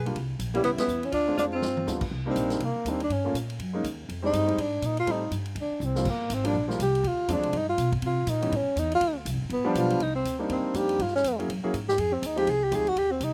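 Small-group swing and bop jazz with a cool, smoky mood, cut from a longer piece: a dark, whispered tenor saxophone carries the melody up front with subtone and scooped notes, joined by a breathy alto saxophone with slapback echo on a second line only until 2.0 seconds. A woody, growly upright bass and a concert grand piano with deep bass support it, the band hits an accent at 0.8 seconds, and a swinging big-band drum kit with a punchy kick adds fills at 1.4 and 5.8 seconds. The tenor takes a solo from 2.1 seconds over minor-key changes, in a dry, intimate, close sound.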